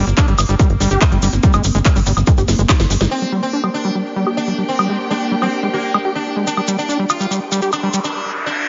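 A buzzing, shimmering sitar takes the melody from 3.1 seconds in this hypnotic, alien psychedelic trance excerpt at 143 BPM in G phrygian, joined by lush bowed strings as a filter sweeps over the techno drum kit and the squelchy, distorted acid bass riff, after an opening where a heavy, up-front kick, a tight sawtooth sequencer bass, a cracking snare with smooth hats and handclaps, a grainy shekere and a morphing wavetable pad in the background drive the groove until a drum fill and band accent, with an electronic riser building from 7.4 seconds.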